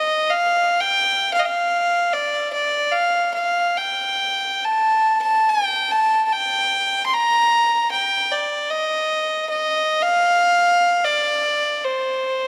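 Celtic folk in a rubato three-four, this haunting, mournful fragment from a longer piece features a lone bowed fiddle, up front with a nasal, reedy gut-string tone and a touch of tape echo, playing across its upper register from C5 to C6 for the full 12.5 seconds in a lightly reverberant room.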